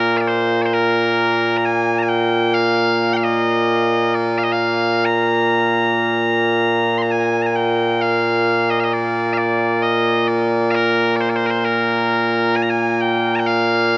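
Scottish traditional pipe music in a slow, stirring 3/4, this ceremonial excerpt features solo bagpipes, bright, piercing and continuous, up front in a huge ambient reverb with a long 4.8-second tail, playing the same strain twice across its 14 seconds.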